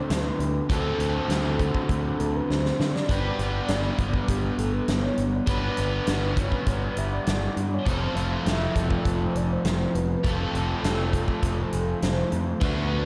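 A straight 4/4 pulse at 101 BPM drives this dreamy, blissful shoegaze and dream pop excerpt, where a huge arena drum kit with a punchy kick and a drum fill at 2.5 seconds carries a growling, overdriven fingered bass, a biting double-tracked guitar riff bathed in lush chorus sits up front, and a velvety, dark detuned synth lead with chorus, tremolo and analog delay sings its melody over D7, G and F chords, all soaked in a lush hall reverb.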